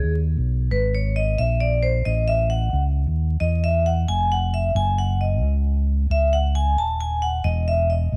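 Vinyl crackle and a light small-room reverb frame this short, mellow and cool jazz-hop clip at 89 BPM with a swung sixteenth-note feel, where a bright, ringing vibraphone played with medium hard mallets and slow motor vibrato takes a solo up front through chords moving from C#sus2 to Emaj7(no3), over a dark, round and punchy fingered electric bass.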